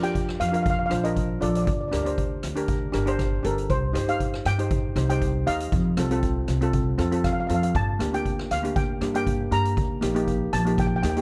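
A bright, close-miked double-seconds steel pan sits up front, struck with hard rubber sticks to comp full, dry chords through a carefree, bouncy calypso at 119 BPM with a light sixteenth-note swing. Above it, a mellow lead pan played with soft rubber sticks carries a shimmering melody, while a woody, thumpy gut-string upright bass plucks pizzicato beneath. A natural-sounding street-band kit with a boomy kick, hi-hat and rim click keeps time over a Bbmaj7, Gm, Cm, F, Gm, Eb progression, all framed by light reverb and a dark production in this 11.2-second cut from a longer piece.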